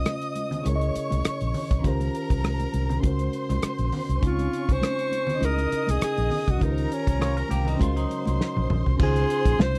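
Lush and romantic, this short cut of 1970s-style soul rides a lightly swung groove from a thuddy, cloth-damped drum kit with dark cymbals, a round, foam-muted fingered bass up front, and high-tuned congas ringing in the background, while a worn, slightly out-of-tune tine electric piano lays down mellow jazzy chords under a smooth, bowed violin section with rich vibrato. A warm alto saxophone takes the melody at 4.3 seconds with scooped notes and light vibrato, a bright, twangy clean electric guitar adds a short picked riff from 7.2 seconds, and the drums play a fill at 8.4 seconds. The sound is dry and close, like a vintage studio session.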